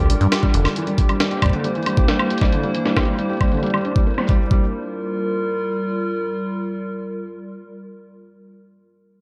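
A warbling, lo-fi tape-like pad opens on sustained Gm7 and C7 chords, its detuned square and triangle tones softened by chorus and built-in reverb, while a felt-muted upright piano traces mellow arpeggios with audible action noise through a low-pass filter and dub echo. This intricate, eerie IDM cut, taken from a longer piece, moves at 136 BPM in a straight 4/4 in G dorian, tuned slightly flat to A4 = 436 Hz. A rubbery, resonant acid bass plucks briefly in the opening moment, and a very quiet pulsing gated texture hovers beneath for the first few seconds. A gritty, pitched-up jungle sampler-style kit of hi-hat, medium-tuned snare and woodblock enters at 0.1 seconds behind a filter sweep and dub echo, joined by a compressed, thumpy electronic kick up front from 0.4 seconds. Around 4.3 seconds the jungle kit and texture stop, the piano and kick end shortly after, and the nostalgic pad carries the returning Gm7 alone inside a moderate spring reverb and an echo-heavy mix.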